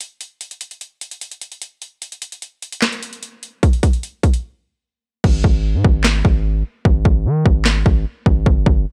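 An electronic trap drum kit opens this brooding, melancholic hip hop excerpt at 149 BPM in a half-time feel, its hard-clipped kick, sharp snare, metallic hi-hats, handclaps and crash cymbal pushed up front with overdrive and vintage 12-bit sampler grit. After a break at 4.4 seconds, a hard-hitting 808-style bass enters at 5.2 seconds, ranging from G1 to Eb3 with a punchy, heavy sine tone, a noise layer, a fast attack and a decaying body, while the hats drop out. A digital ambience surrounds the whole mix.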